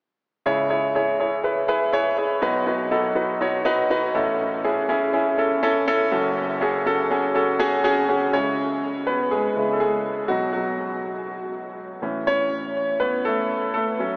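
A straight 4/4 pulse at 122 BPM carries this dramatic, bittersweet pop fragment in C# minor, tuned to A4 = 443 Hz and cut from a longer piece. A brilliant concert grand piano plays alone from 0.5 to 14.2 seconds, spanning F#1 to C#5 with deep bass, short sustain and an up-front presence, its notes trailed by analog delay as it moves through C#m, B, A and F#m before returning to C#m at 8.3 seconds. A huge ambient reverb with a 6.4-second decay soaks the dreamy mix, which has a small-speaker character.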